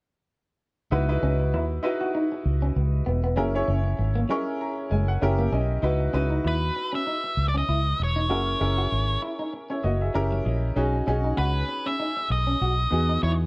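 Breezy and upbeat, this short pop passage from a longer piece moves at 98 BPM in 4/4 with a gentle swing on the sixteenths, its harmony built around C#m11, F#7 and F#7b9 before turning to B69 and Emaj7. A bright, brilliant grand piano sits up front as accompaniment, dressed in subtle chorus and plate reverb, and it adds fills at 4.0 and 9.8 seconds. Beneath it, a vintage fingered electric bass with a foam-muted, round, punchy tone holds the low end from the start. An electric guitar at the edge of break-up plays a picked, compressed riff through lush chorus. At 6.5 seconds an octave-fuzz lead guitar takes the melody, a dark, distorted voice with plate reverb and delay, while a light reverb gives the whole a sense of shared space.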